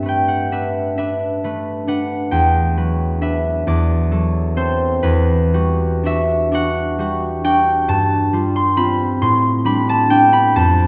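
Bathed in a wet concert-hall reverb with a dark overall production, this short cut from a longer classical solo piece features a bright, ringing concert harp, fingerpicked and placed up front, drifting through a wistful, gentle rubato in 6/8 across a range from E2 to C6 before settling on an Am11 chord at 9.2 seconds.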